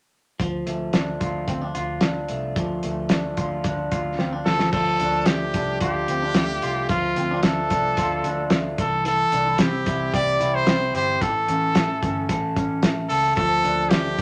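A moderate studio reverb gives this jangly indie pop excerpt a close, contained sound, in D minor at 111 BPM in a straight 4/4 with a wistful, restless mood. A cloth-damped, thuddy drum kit with a fat snare, tight kick and muffled, dark cymbals sits up front with a gritty, lo-fi, rolled-off character, while a picked electric bass adds a round, punchy, foam-muted low end. Through a small old amp, the twangy electric guitar plays bright, slightly broken-up arpeggios that ring out at the front of the mix. After a drum fill at 4.2 seconds, a brilliant, forceful trumpet enters at 4.5 seconds with a close-miked, vibrato-laden solo melody that becomes the loudest voice. The harmony rests on D minor before moving through C and A and returning to D minor at 13.4 seconds.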